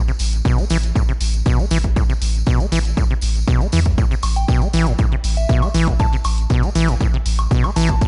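A squelchy, resonant sawtooth acid bass riff, coloured by tube saturation, cassette tape, analog delay and sidechain pumping, sits up front in this trippy, hypnotic acid house excerpt in A minor at 119 BPM, over a deep, round sine sub bass that also pumps, a punchy analog kick, electronic hi-hat and woodblock, and a jingly tambourine, while a soft FM synth bell with chorus and delay drifts in the background from 4.4 seconds, in a dry, gritty hardware recording with digital ambience.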